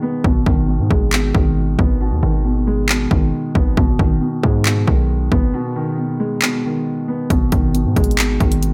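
Set in a digital ambience, this short cut from a longer trap piece sits in G# minor at 136 BPM with a half-time feel, its mood melancholic and menacing. A dark, mellow, boxy grand piano opens alone under a low-pass filter, joined at 0.2 seconds by a punchy, heavy 808-style bass with a sine core, noise layer, fast attack and decaying tail, plus an electronic drum kit of hard-clipped kick and handclaps. After a break from 5.5 to 7.3 seconds, the bright hi-hats, muted until then, come in at 7.3 seconds over the G#m harmony.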